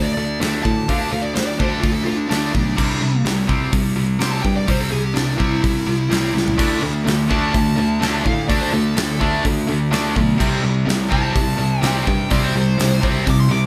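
This excerpt has a moderate studio ambience, with the band playing live together in one room. It is anthemic, swaggering hard rock in straight 4/4 at 126 BPM, and a biting, overdriven lead guitar carries a solo across the whole clip, ranging from D4 up to D6. Beneath it, a scooped, high-gain distorted guitar sits up front with a picked riff, and a growly, foam-muted electric bass adds punch in the low register. A gated 80s drum kit with a punchy kick, a medium-tuned snare and bright cymbals enters at 0.4 seconds, its airy stone-room sound polished and up front, and it plays a fill at 6.3 seconds. At 6.6 seconds a tight distorted guitar joins in the background, sharing the riff's register as the harmony moves between D5 and C chords.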